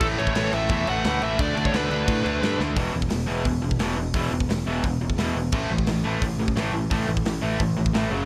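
Energetic and rebellious, this punk rock excerpt opens with a nasal, overdriven lead guitar through a parked wah playing a short melody that stops at 2.6 seconds, just as the drums play a fill. Underneath, a cranked, double-tracked stack guitar drives a bright, up-front riff through 8.3 seconds, while a growly, direct picked electric bass holds the low end and a big acoustic rock kit brings a punchy kick, medium-tuned snare, hi-hat and crash with a dark, big-room sound. Light reverb surrounds the mix as the chords move from A to D5, then on to E5 and A5.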